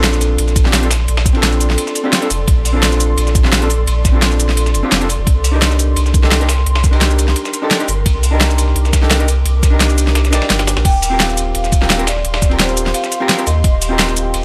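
A clean, picked hollow-body jazz guitar with delay opens this lush liquid drum and bass excerpt at 172 BPM in Bb major, alongside a round sub bass with tube saturation up front, a gritty, compressed sampler-style soul kit and a crisp, fat-snared pop kit, joined by an airy, detuned chorus pad pumping in the background at 0.4 seconds and a knocking electronic kick at 0.6 seconds, before a ringing soft-mallet vibraphone with delay carries the melody from 10.8 seconds over chords moving from Bbmaj9 through Cm7 to Eb69.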